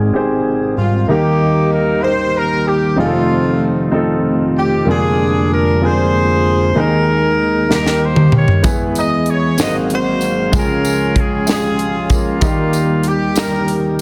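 A present, jazz-style horn section carries the melody with a slapback echo from 0.8 seconds in this soulful, reverent slow gospel passage in 6/8, over a woody, long-sustaining upright piano and a soft, flute-like tonewheel organ turning through a slow rotary speaker, until a crisp, airy fusion drum kit with a punchy kick and high-tuned snare enters on a fill at 7.7 seconds and a jingly, close tambourine joins at 8.6 seconds, all set in a moderate echo-chamber reverb and a dense, heavily limited modern master.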